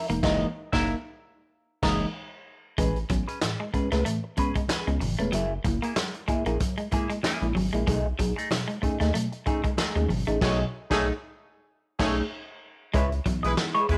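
Funk in 4/4 at 94 BPM, with a lightly swung sixteenth feel and a hypnotic, funky mood, heard in a short section cut from a longer piece. A vintage acoustic drum kit with a punchy kick and medium-tuned snare sits up front, while a rubbery square-wave bass with tube saturation bounces under it with a resonant, plucky attack. A dark, clean semi-hollow guitar played with a wah carries the accompaniment, an electric guitar at the edge of break-up picks a narrow riff, and a mellow tine electric piano with lush chorus adds stabs over chords moving from F#13 through Amaj9, F#9 and B13. Low-tuned, ringing congas slip in very quietly at 2.8 seconds, and a dark, loose horn section with light vibrato joins on a second line at 10.4 seconds during a band accent. The harmony lands on C#m7 at 12.9 seconds as the tine electric piano takes a brief solo, all set in a small room ambience.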